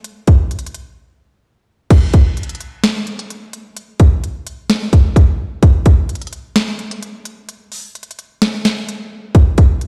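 Hip hop with a menacing, melancholic mood, this short cut from a longer piece rides a half-time feel in 4/4. The only part is an electronic trap drum kit, produced and placed up front, built from kick drum, snare drum, hi-hat and crash cymbal. Its kick is hard-clipped, the snare hits sharp, and the hats sound crisp. The kit sits in light reverb and digital ambience, and the whole recording sounds as if played on a big sound system in a bare room, wrapped in a large studio reverb. A brief opening passage gives way to a longer second section at 1.9 seconds, with breaks in the groove at 1.0 seconds and again at 7.5 seconds.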